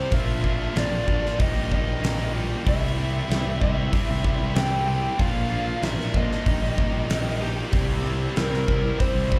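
Swaggering and driving, this short classic rock excerpt rolls along at 95 BPM in C mixolydian, captured live through a club PA with light reverb and cycling through Bb, Eb/Bb and C. A huge arena drum kit with a fat snare and punchy kick sits up front beside a fuzzy, overdriven picked bass, while a tight distorted guitar and a biting overdriven guitar in the background share the riff, both carrying slapback echo. A lo-fi lead guitar through a small cranked amp carries the melody between G4 and G5 with overdrive, slapback echo and plate reverb, over a barely audible bright tonewheel organ holding sustained chords through a slow rotary speaker.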